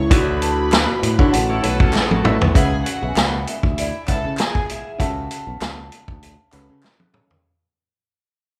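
A punchy, up-front vintage drum kit with a rolled-off top drives this cinematic, smooth piece of lush 1970s-style soul at 98 BPM in 4/4, with a light 16th-note swing and drum fills at 1.9 and 6.8 seconds. Over Dmaj9, A6 and C#m7 chords, a ringing, close-miked vibraphone with slow motor vibrato carries the melody. A gut-toned, reedy string section plays a second line, a clear concert grand piano with deep bass accompanies, and a bright, growly fingered electric bass holds the low end. A delicate, bell-like celesta and very quiet hollow handclaps sit in the background, a twangy, slightly broken-up electric guitar plays a brief riff from 1.5 to 2.5 seconds, and the whole live-room band fades out from 2.6 seconds in this excerpt cut from a longer piece.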